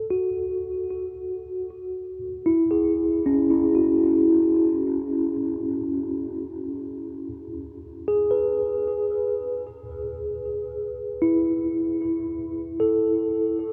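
A mellow, clean tine electric piano plays alone and up front in free time, sounding through its built-in speakers with tape echo, floating in a huge, wet ambient reverb across this weightless, peaceful ambient excerpt as its chords move from C#madd11 at 2.5 seconds through G#m and E before settling into open space at 12.0 seconds.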